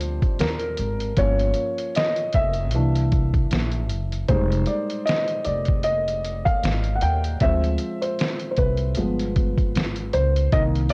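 Hazy and reflective, this lo-fi hip hop excerpt sets a felt-muted upright piano, soft and intimate with cassette-tape haze and a low-pass filter, taking a solo over lush jazz chords from Ebmaj13 to G7b9, alongside a woody, gut-string pizzicato upright bass with tube saturation and a muffled, pitched-down sampler-style drum kit of thumpy kick, medium-tuned snare and hi-hat carrying 12-bit grit, all three parts up front in a dry, gritty mix.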